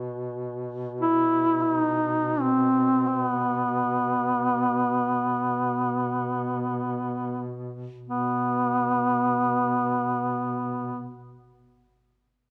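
A dark production with a faint mains hum and moderate recital-hall reverb frames this longing, solemn Caucasian folk lament in B major and free time, slowing through its first 8.1 seconds, as a mellow, distant duduk sustains a low drone from the start and a warm, up-front duduk enters at 1.0 seconds with a melody shaped by vibrato and scooped notes, heard as a fragment of a longer piece.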